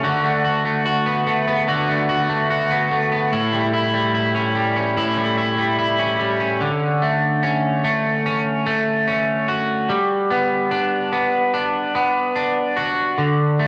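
An electric guitar sits up front, playing alone throughout this short dream pop fragment cut from a longer piece, its picked, twangy tone pushed just to the edge of break-up. The mood is dreamy and blissful, carried by a subtle chorus, analog delay and a cassette tape character on the guitar, all bathed in a wet spring reverb. The part ranges from A2 up to F#4 over a straight, unhurried 4/4 pulse. The harmony moves from D6 to A7, then shifts at 6.6 s into a second section that glides from Dmaj7 to Gmaj7. The home cassette recording gives the whole piece an intimate, slightly hazy quality.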